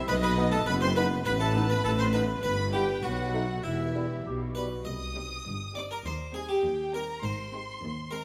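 Sneaky and mischievous, this playful, whimsical film cue moves at 101 BPM in a straight 2/4, starting in E minor and shifting to C minor at 4.9 s. An airy, full harpsichord carries the melody alongside a softly expressive violin section, while a second, lush and focused violin section weaves a countermelody above a smooth, even viola section. Woodwinds add color in the opening stretch: a clear oboe, a hollow silver flute in the background, a dark, very quiet clarinet and a distant, mellow bassoon, with a loose, roomy French horn section holding sustained chords. Underneath, a dark tuba joins the cello and double bass sections on the bass line, but the winds, horns and tuba all drop away by 4.9 s, leaving harpsichord and strings to carry the C minor passage that ends on an Abmaj7 chord. The ensemble sits in a moderate scoring-stage reverb, and the cue is cut from a longer piece.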